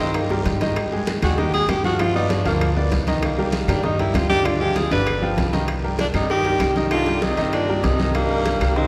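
A breathy tenor saxophone leads this sultry, driving slice of Afro-Cuban jazz, playing up front with light vibrato and scooped notes as it takes a solo through the first 5.7 seconds. A bright upright piano sits just as close, its brilliant tone carrying audible action noise, while a thumpy pizzicato upright bass with steel strings anchors the low end with a dark, woody sound. The percussion bed mixes high-tuned bongos, damped congas struck with hard hands, a raspy guiro, ringing metal-shell timbales and woody claves, all held beneath the horn and piano, with a drum fill early on. At 6.0 seconds a whispered, intimate baritone saxophone enters in the background as a second line, adding soft-attack depth beneath the tenor. The whole ensemble sits in a long, wet cathedral reverb that gives the recording the feel of a church or concert hall, and the passage is cut from a longer piece.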